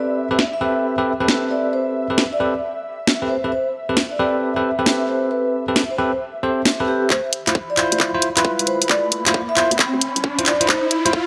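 Skippy and moody, this two-step UK garage excerpt at 134 BPM in D dorian sets a mellow soft-mallet vibraphone melody with digital delay over bright, bell-like electric piano stabs and an ethereal, airy pad pumping behind them on Am9, with an up-front garage kit of handclaps, hi-hat and a cracking low-passed snare entering at 0.4 seconds, before a tight electronic kick and a hollow, dark FM bass arrive at 7.1 seconds on Dm9 for a build-up and drum fill as an electronic riser joins from 8.1 seconds, the whole excerpt set inside a lush hall reverb.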